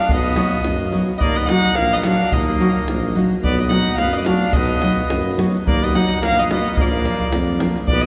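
Balkan folk in the manner of a wedding band, this fiery, restless excerpt moves at 108 BPM in 2/4 with a swung sixteenth-note feel. It is cut from a longer piece and runs about 8 seconds. A bright, earthy bowed violin with light vibrato carries the melody up front, while a clear, classical-style trumpet plays a second line and a mellow, soft-attacked tuba holds the bass. A tight davul and a fingerpicked nylon-string guitar with a deep classical tone fill in the accompaniment, the guitar entering at 0.4 seconds. Chords move between B, Ebm and Bb, and a cavernous cathedral reverb with a 5.1-second tail places the band in a church or concert hall.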